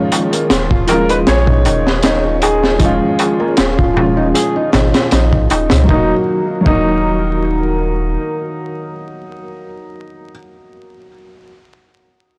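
A brooding, dark trip hop fragment in Eb minor at 78 BPM opens on a worn, woody upright piano with harmonic tremolo and tape echo, a warbling, nostalgic pad in the background and a faint flickering granular shimmer, before a crunchy, saturated breakbeat kit with a high-tuned snare and tight kick arrives up front alongside a crisp metal-shell darbuka played with soft hands. A fingerpicked nylon-string guitar adds arpeggios roughened by 12-bit sampler grit, a round dub sub bass with transformer saturation sits deep beneath, and from 0.9 s a felt-muted upright piano carries an intimate melody with audible action noise. The blown-out, overdriven recording is coated in vinyl crackle and small-room ambience, shifting from a Db/Eb chord to Ebm at 5.9 s as the drums and guitar fall away by 6.9 s, leaving the sub bass, keys and pad to carry the close.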